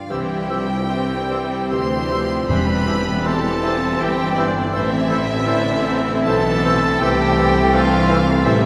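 A chamber violin section with a rich, smooth vibrato sings a serene, tender melody over ringing concert harp arpeggios and distant, dark trumpet stabs, joined almost at once by airy flute, mellow clarinet, cor anglais and bassoon lines, a clear second violin line, focused violas, soft-edged French horn chords and clear trombone chords, and a low bass of cellos, double basses and tuba, all in a slow, rubato 3/4 romantic movement in C major at 70-86 BPM, with hard-mallet timpani sounding from 2.5 to 3.6 seconds and the whole orchestra bathed in a long church reverb.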